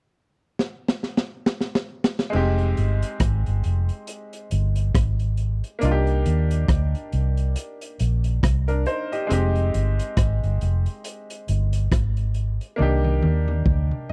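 Longing and bittersweet, this short cut of lovers rock reggae moves at a slow 69 BPM in 4/4, with a gentle swing on the sixteenths. A crunchy breakbeat drum kit opens with a fill at 0.6 seconds, its gritty, saturated sound sitting up front with a punchy kick, a high-tuned snare, rim clicks, toms, hi-hat and dark cymbals under a rolled-off top. At 2.3 seconds the vintage muted fingered electric bass and the grand piano enter together as the music settles into a slow move between Fm7 and Cm7. The bass is the loudest part, round, foam-muted and amped, while the bright, worn piano plays accompaniment at a lower level with a brilliant, short-sustained tone. The drums add another fill near the close, and the piano adds a brief fill at 13.7 seconds. The whole has the close, dry feel of a 1970s studio room, touched with a little reverb.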